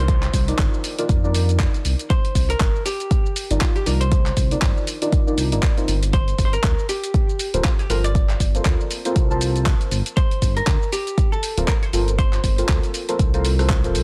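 Deep house at 119 BPM in C minor with a 58% swing on the 16ths, this hypnotic, late-night excerpt moves from Cm11 to Gm11, carried by a deep, up-front electronic kick and a tape-warm, small-room drum kit of handclaps, hi-hat, rim click and shaker, along with a smooth, dark gliding synth bass with tube saturation and sidechain pumping, soft, mellow chord stabs with a sub octave, chorus, phaser and analog delay entering at 0.5 seconds, a clean, picked hollow-body jazz guitar melody through analog delay, and a very quiet downlifter heard only in the first 2.1 seconds, within a dense, heavily limited modern master and digital ambience.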